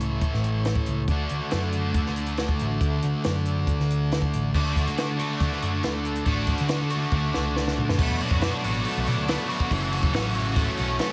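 Carefree and jangly, this indie rock excerpt runs at 139 BPM in a straight 4/4, with a thick, up-front fuzz guitar riff and a bright, overdriven stack guitar riff colored by chorus and digital delay, both riding over a round, dark hollow-body short-scale bass. A compact cocktail drum kit sits dry and up front, with a high-tuned snare, punchy kick and dark cymbals, and it breaks into a fill from 7.1 to 8.0 seconds. A vintage combo organ holds buzzy, lightly vibrato chords in the background as the harmony moves from A to D, then to Bm7 and F#m7 once the fill ends, all with little reverb.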